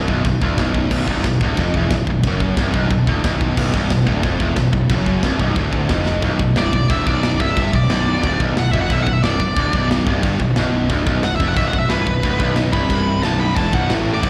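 Heavy metal at 180 BPM in B phrygian, dark and aggressive, where a tight, double-tracked distorted guitar riff with slapback echo sits up front over a growly, fuzz-drenched picked bass and a mid-forward acoustic kit with a tight kick, medium-tuned snare, rolled-off top and china and crash cymbals, until a drum fill at 6.1 s ushers in a high-gain lead guitar solo with slapback echo and delay from 6.2 s, all heard as a live gig through the venue's PA with recital hall reverb in this cut from a longer piece.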